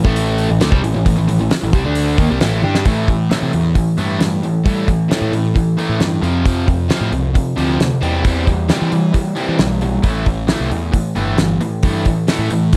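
From the first beat, a dry, damped 70s drum kit with a fat snare and tight kick drives this swaggering classic rock cut alongside a biting overdriven guitar riff up front, a raw garage guitar with phaser riffing in the background and a fuzzy, picked electric bass, until a drum fill at 2.6 seconds ushers in a new section that moves through A7(no3), F5 and C/E chords, the whole mix sitting in a large studio reverb.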